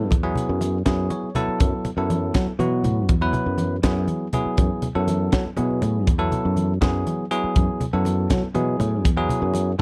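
A bell-like tine electric piano and a growly, sustaining fretless bass open this intense, driving electric jazz fusion passage together at 0.0 seconds, both placed up front and resting on an F#m7 chord. A crisp fusion drum kit joins almost at once in a straight 6/8 feel, with a tight kick, a high-tuned snare and hi-hat captured in a small, pumping room. Congas with a thin, medium-tuned skin sit in the background, played with soft hands and recorded close and dry. Between 0.9 and 1.6 seconds the clean, bright electric piano breaks into a short fill over the punchy bass. The sound is direct and nearly free of reverb, and this short section is cut from a longer piece.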